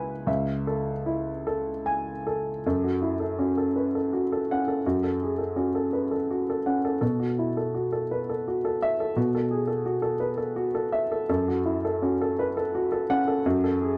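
A dark, mellow grand piano plays alone from the start, up front and intimate in this reflective neoclassical minimalist piece, moving with a rubato lilt in 6/8 through a slow, brooding progression that settles onto F# minor at 2.6 seconds. The boxy tone has a short sustain, and the audible action noise makes the playing feel close at hand. The dry, close recording carries a 1970s studio character, with only a modest booth ambience around the instrument.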